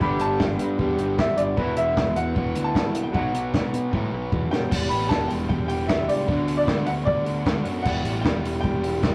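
A rough rehearsal-room recording with warm saturation and a short, wet booth ambience frames this moody, bittersweet indie rock excerpt in E minor, moving at 153 BPM in straight 4/4 and tuned to A4 = 438 Hz. A clear, woody upright piano with long sustain carries the melody, shadowed by a very quiet, bell-like tine electric piano playing a second line. A crunchy overdriven guitar drives a riff throughout, joined at first by a lo-fi, compressed, slightly broken-up guitar through a small old amp that drops out at 4.7 s, while a growly fuzz bass anchors the low end. Up front, a compact cocktail drum kit with a dark, rolled-off top, high-tuned snare, punchy kick, hi-hat and crash plays a fill from 3.9 s leading into the second section at 4.7 s. The harmony moves through G, Esus2 and B before settling into Em, Bm/D and Emadd9.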